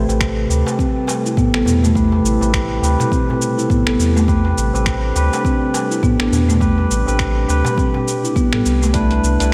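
An organic downtempo excerpt in A minor at 103 BPM with a light swing, meditative and hypnotic, opens on a barky tine electric piano under a filter sweep with delay and slapback echo, a breathy chorused pad, and a round sub bass, all pumping to the sidechain, as a gritty sampler-style kit of cabasa, finger snaps and hi-hat, a crisp darbuka in the background and a deep electronic kick join, with a buzzing soft-mallet marimba adding delayed arpeggios from 0.8 seconds, all bathed in a lush hall reverb that gives a big arena sound as the Am7 harmony moves to Cmaj7 at 8.9 seconds.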